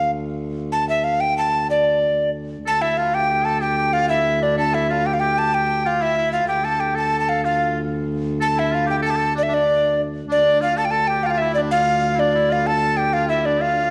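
A dark, reverberant recital-hall sound frames this ancient, mysterious medieval dance in D minor, moving in a straight 6/8 at 126 BPM counted in dotted quarters, cut from a longer piece. A breathy, bright alto recorder carries the melody up front, its chiff and vibrato close at hand, over a low bowed viola da gamba drone on D2 with a soft attack and ringing tone. At 2.7 seconds an edgy, punchy shawm joins with a folk-style second line beneath the recorder, and the music turns to new material at 10.3 seconds.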